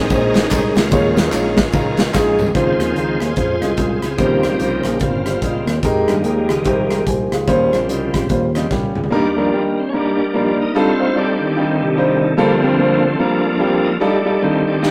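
This uptempo gospel excerpt moves at 147 BPM in a swung 4/4, with a jubilant yet reverent mood. A bright, shouting tonewheel organ leads throughout, its full, clean sustained chords turning through a slow rotary speaker and chorus vibrato, while an intimate grand piano accompanies up front with audible action noise. A growly, punchy fingered electric bass and a polished, airy acoustic drum kit with a punchy kick and medium-tuned snare drive the groove, adding drum fills at section changes, as tambourine and group handclaps sit in the background for the opening bars. At 2.5 seconds a very quiet French horn section enters with soft-attack sustained chords and light vibrato, riding harmonies from Dbmaj7 through Eb13 and Fm11. At 9.1 seconds the bass, drums and horns drop away, leaving organ and piano to carry Ebmaj7, F13 and Gm11 until a last drum touch at the close. The whole take has a rough rehearsal-room character, with tube saturation and a stone room reverb.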